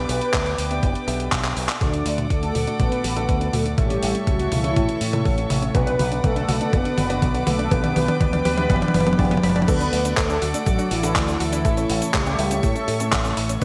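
This excerpt, cut from a longer piece, opens with mellow synth brass carrying the melody over warm, bowed studio strings holding sustained chords, a dark baby grand piano playing stabs through a low-pass filter, and a bright fingered electric bass shaped by an envelope filter. It's danceable, melodramatic italo disco at 122 BPM in a straight 4/4. The drums arrive almost immediately: an up-front, tape-colored 12-bit drum machine with cabasa, crash, handclaps, hi-hat and toms bathed in gated reverb, then a thumpy electronic kick at 0.3 seconds. After a drum fill, a round analog pluck joins in the background at 1.8 seconds with chorused, delayed arpeggios. The piano gets a filter sweep while the chords move through D, A and B minor. The brassy, detuned lead wears chorus, delay and a cassette-tape grain, and the whole mix sits in a lush hall with bright 1980s-style digital sheen and a touch of vinyl crackle.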